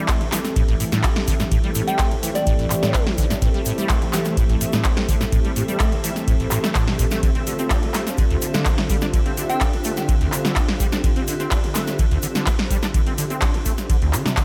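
A straight 4/4 acid house groove at 126 BPM, cut from a longer piece, is driven by a deep, dry electronic kick sitting up front and an analog drum machine with punchy snare, handclaps, metallic hats and ride, plus a grainy tube shaker in the background, all entering at 0.1 seconds. Underneath, a rubbery, resonant sawtooth acid bass riff with tube saturation, chorus and dub echo pumps against the kick alongside a smooth, detuned analog pad and a cloudy, evolving granular pad, the harmony moving from Am7 to Dm7 at 7.2 seconds in A minor. A gentle FM bell with chorus and dub echo drifts in briefly at 1.9 seconds, adding a pure glint to the gritty, hypnotic, echo-heavy mix.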